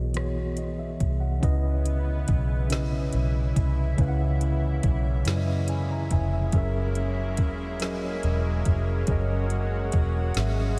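A slow, straight six-eight R&B groove at 47 BPM in C# dorian sets a sultry, late-night mood in this short excerpt, where a smooth, up-front drum kit of soft kick, woody snare, rim click and metallic hi-hat sits with a dark, round, foam-muted fingered electric bass, while a mellow tine electric piano moves from Emaj9 to C#m9 and F#9, adding fills at 5.3 and 10.4 seconds, and a lush, detuned unison pad with chorus and a soft attack joins at 1.4 seconds, all in light reverb.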